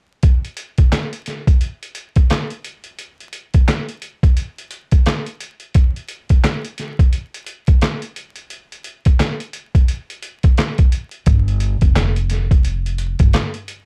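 A gritty, pitched-down sampler drum kit of thumpy kick, medium-tuned snare, hi-hat and handclaps sits up front from 0.2 seconds, compressed and re-recorded in a small room, driving this reflective, moody boom-bap hip-hop at 87 BPM with a swung 16th-note feel. At 11.3 seconds a woody, pizzicato upright bass on gut strings joins low in its register, playing until 13.3 seconds. The dark, warm production carries vinyl crackle and little reverb, and the piece is cut from a longer work.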